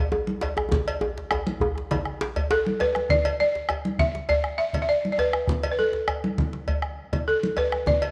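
A moderate echo-chamber reverb surrounds this festive, driving short cut of West African traditional drum ensemble music at 101 BPM in a straight 4/4. Bright, band-limited congas with a thin, damped skin, a round, close bombo, a metallic cowbell and two tight, cracking djembes, the first played with hard hands, build a busy groove, with a drum fill running from 0.7 to 3.1 seconds and the first djembe dropping out at 2.6 seconds. At 2.5 seconds a woody, buzzing balafon struck with rubber mallets enters up front with slapback echo, carrying the melody between A4 and E5.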